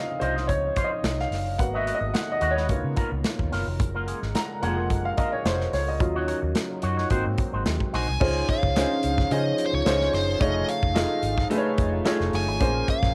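Polished 1980s jazz-funk pop in Db major, this upbeat, breezy excerpt moves at 109 BPM in 4/4 with a lightly swung sixteenth-note feel. A baby grand piano with short sustain and a subtle chorus sits up front, playing a solo over the opening 8.2 seconds while a shimmering, detuned pulse-width pad holds mellow sustained chords in the background. A twangy, clean electric guitar through an envelope filter and lush chorus plays a riff until 8.1 seconds, over a dark, foam-muted fingered bass and an airy studio drum kit with a punchy kick, medium-tuned snare, hi-hat and crash. At 8.0 seconds a nasal, overdriven lead guitar with a parked wah takes the melody as the harmony shifts from Dbmaj9 through F7alt to Bbm9. The whole mix carries the soft haze of a home cassette recording with light reverb.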